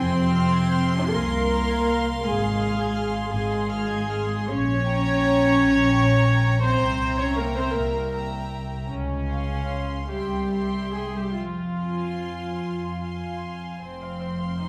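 A rich, floating viola section sits up front in this elegiac, yearning excerpt of a slow romantic string-orchestra movement in F minor, moving in a rubato 6/8 at 47-57 BPM, as a sul tasto violin section with soft attacks carries the high melody alongside a second violin line with light vibrato, while dark cellos and an intimate, close double bass section anchor the bass, the strings set in a wet scoring-stage reverb.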